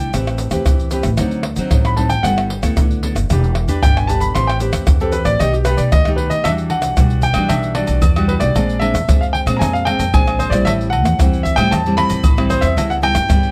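A concert grand piano with audible action noise and long sustain leads this playful, festive samba and choro excerpt, soloing through the opening 6.5 seconds as a fingerpicked nylon-string guitar, a woody, thumpy pizzicato upright bass and close, dry hand percussion of tube shaker, tight surdo, pandeiro, tamborim and agogo bells drive the groove under light reverb.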